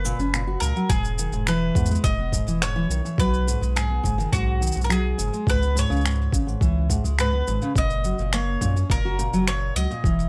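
A bright bowl-back mandolin, a fingerpicked steel-string guitar and a round sine sub bass all sound from the very start of this playful folktronica fragment cut from a longer piece. The double-strung mandolin carries the melody through a plate reverb and digital delay, while the full-bodied dreadnought guitar spreads arpeggios beneath it and the deep bass sits up front with a fast attack and long sustain. Electronic shaker and finger snaps with a tape-like glow arrive at 0.1 seconds, and a muffled, pitched-down kick, compressed and overdriven into a thumpy sampler-style hit, joins at 0.9 seconds. The harmony moves from F# through Emaj7, B5 and C#7(no3) before returning to F#, all over a straight four-beat pulse. A light reverb gives the whole a gentle, cosy sense of space.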